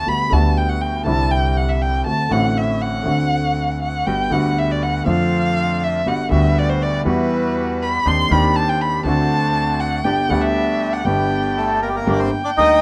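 A melancholic, sultry tango in loose rubato, cut from a longer piece, opens with a close, expressive solo violin singing with vibrato and portamento over a worn, long-sustaining baby grand piano and a woody pizzicato upright bass, before dark, smooth, reedy bandoneon stabs step up front at 4.1 seconds and a bright, reedy bandoneon melody slips in from the background at 11.6 seconds, the whole scene wrapped in light reverb and vinyl crackle.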